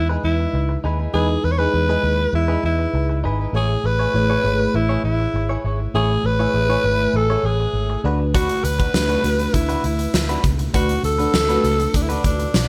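Glossy and uplifting, this excerpt of 1980s-style pop moves at 100 BPM in a straight 4/4, with a raspy, gritty alto saxophone carrying the melody up front through plate reverb and delay. Beneath it, a dreamy FM electric piano with a soft pad layer shimmers with chorus and tremolo, a clean, twangy electric guitar picks a bright riff through lush chorus and delay, and a round, foam-muted fingered bass sits dark and punchy over chords moving from Emaj7 to Amaj7 to D6. A huge arena drum kit with a fat snare and punchy kick enters at 8.3 seconds.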